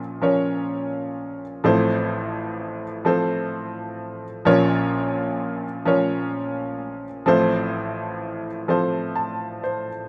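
A bright upright piano plays solo, performing a folk piece in 6/8 at a slow 42 beats per minute, counted in dotted quarters, in F major. The instrument has a worn, woody character, slightly detuned, with audible action noise and a short sustain that keeps each note close and present. Its range spans from A1 up to A5, and it sits up front in a large studio with a moderate reverb that lends a little air around the tone. The harmony moves between B-flat minor and F over A, shifting at 1.6 seconds and returning to B-flat minor at 4.5 seconds. The mood feels hopeful and intimate, a brief passage taken from a longer piece that ends at 10.1 seconds.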